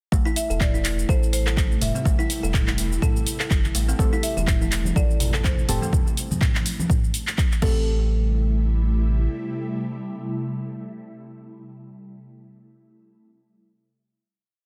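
Earthy and driving, this short afro house piece in A minor runs at 124 BPM in 4/4 with a light 16th-note swing, opening straight into a drop on an Am7 chord before a final hit takes over at 7.9 seconds. A punchy, overdriven electronic kick pounds four-on-the-floor alongside a programmed afro-pop kit of warm hats, shaker, clap, low tom and crash, while a round, sine-like sub bass carries a dub-style line beneath them. A woody, hollow-sounding kalimba repeats a 16-step arpeggio sequence through tape echo, and a rosewood marimba with medium mallets sits in the background with hook phrases, also echoed. From 4.0 seconds a dark, warbling chord stab adds held chords with syncopated pushes, and distant, bright congas interlock briefly in the background. Entering at 1.1 seconds, an ethereal, detuned pad with ensemble chorus, phaser and its own reverb sustains chords until the close, and the pad, kalimba, bass and stabs all pump against the kick in a dense, heavily limited modern mix.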